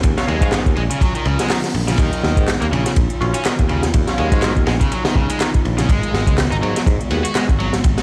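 A swung breakbeat groove at 123 BPM in 4/4 drives this gritty, swaggering excerpt in Eb minor, with a crunchy acoustic break kit of punchy kick, high-tuned snare, dark cymbals and hi-hats, saturated and rolled-off on top, sitting up front. Underneath, a fainter house kit adds layered handclaps and metallic hi-hats with a tape-tinged, small-room character. A growly picked electric bass stays prominent from the start, while a band-passed sawtooth chord stab enters at 0.2 seconds with a nasal, plucky bite shaped by phaser and delay. A cranked, overdriven guitar riff arrives at 0.3 seconds, bright and picked, its echoes trailing through the mix. Behind it all, a warbling, lo-fi pad with detuned square and triangle tones holds sustained chords in the background, pumping under sidechain and blurred by chorus, moving from Ebm9 to Abm7 at 5.9 seconds. The whole track sounds as if played through a big sound system in a bare stone room, giving it a cavernous, echoing space.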